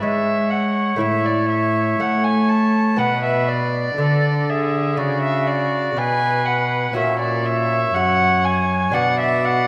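A wet concert hall reverb with a 2.1-second decay surrounds this serene, radiant excerpt of a baroque-style sonata movement with continuo, played at a steady 60 BPM in 4/4 and tuned to A4 = 439 Hz. Up front, a single bowed violin carries the melody with a dark, nasal gut-string tone, while a bright oboe with light vibrato sings a second line beneath it. A delicate fingerpicked lute with double strings and a rich, reedy bowed cello on the bass support the harmony as it moves from E/G# through A and Bm to F#/A# before settling back on Bm at 8.9 seconds.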